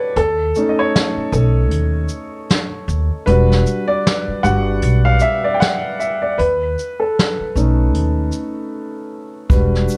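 The recording has a hazy cassette-tape character and light reverb, like a snippet lifted from a longer lo-fi hip hop track. At a relaxed 77 BPM in 4/4 with a lazy 16th-note swing, the mood is reflective and hazy, drifting between B9 and Em7 chords. A dark upright piano, mellow and smooth with long sustain and its own tape-worn vintage tone, carries the music throughout as a featured solo voice, sitting up front. Beneath it, a growly pizzicato upright bass with a woody steel-string sound and a vintage brush kit in a natural studio room fill out the groove, the kit's punchy kick and medium-tuned snare softened by a rolled-off top. Near the close, at 9.5 seconds, a grainy, bright egg shaker slips in far in the background.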